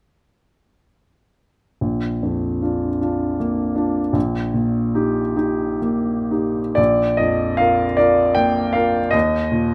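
A clear baby grand piano enters at 1.8 s, carrying this brief portion of a tender, serene romantic nocturne in Bb major, moving in a slow, rubato 6/8 at roughly 40-54 BPM in dotted quarters. Its range spans Bb1 to G5, with long sustain and the mechanical sounds of its action audible up front, giving an intimate, natural presence. Close, detailed microphones capture the instrument in a moderate recital hall reverb, and the harmony settles from Bb toward Eb over Bb before the piece shifts into a new passage at 6.8 s.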